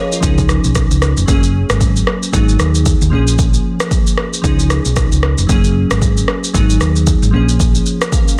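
Glassy digital keys open this sultry, hypnotic afrobeats piece at 0.0 seconds, their sine-like tone given a fast attack, a decaying tail, a filter sweep and a shimmer of chorus as they settle into a mellow, full-bodied accompaniment. An electronic afro-pop drum kit joins almost at once, with a deep kick, rim click and shaker; it is overdriven, re-recorded in a small room and placed up front. A hollow-body short-scale electric bass, played with the fingers, enters at 0.2 seconds with a dark, round and punchy amped sound. At 114 BPM in 4/4, with a light 16th-note swing, the parts cycle twice through C#add9, F#add9, G#m7 and A#m7. The mix carries little reverb and arrives as a dense, heavily limited modern master, cut from a longer piece.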